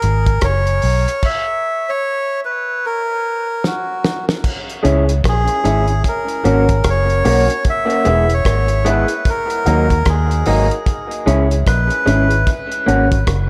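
A deep, hypnotic dub reggae recording bathed in moderate spring reverb and an echo-heavy mix, cut from a longer piece, moving at 75 BPM in 4/4 with a swung sixteenth feel in C# dorian. It opens on a break: melodica, bass and a cloth-damped, thuddy drum kit sound an F# chord before the band stops at 1.2 seconds, and a drum fill leads back in. The reedy, breathy melodica sits up front carrying the melody through tape echo, while the foam-muted fingered bass stays round, punchy and dark beneath it. The drums offer a fat snare, tight kick, rim clicks, hi-hat and dark crash cymbals with a rolled-off top. From 4.8 seconds a slightly broken-up, lo-fi electric guitar through a small old amp adds accompaniment, and a mellow concert grand piano drops echoed stabs in the background. Chords cycle through C#m, F#, E and D#m.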